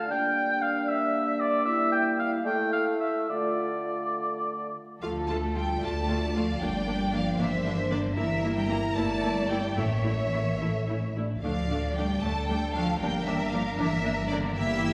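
A quick, stormy classical-period orchestral movement in D minor and 6/8, played with rubato at about 69-78 BPM. An airy flute, an up-front oboe and a distant bassoon open over mellow French horn chords, then at 5.0 seconds warm violins take the expressive, vibrato-rich melody with portamento above lush inner violins, rich violas, clear cellos and close double basses, while soft-mallet timpani add a round, very quiet touch at 9.8 seconds, all set back in a reverberant concert hall.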